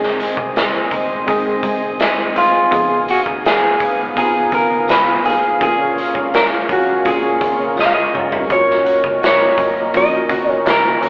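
At 83 BPM in a straight 4/4, a raw garage drum kit sits up front with a punchy kick, a medium-tuned snare, hi-hat and toms, its saturated, gritty sound pumping in a bright stone room, with a drum fill from 7.8 to 8.5 seconds. This wistful, mellow slice of indie and bedroom pop in Eb minor moves through Ab, Fm7b5, Bbm7 and Ebm7. The lead melody comes from a slightly broken-up electric guitar through a small old amp, picked and lo-fi, while a fingerpicked flamenco guitar with fresh strings and a vibrato effect sits in the background. A worn, slightly out-of-tune tine electric piano, lightly overdriven through built-in speakers, adds accompaniment over a smooth, detuned analog pad that holds sustained chords with chorus. Underneath, a plucky analog bass gives a funky sawtooth and square-wave tone with a fast attack and a moving notch, and a jingly tambourine, barely audible and distant, plays from 0.6 to 10.8 seconds. 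The whole excerpt is soaked in a large studio reverb and carries a telephone-like tone, like a band playing live in one room.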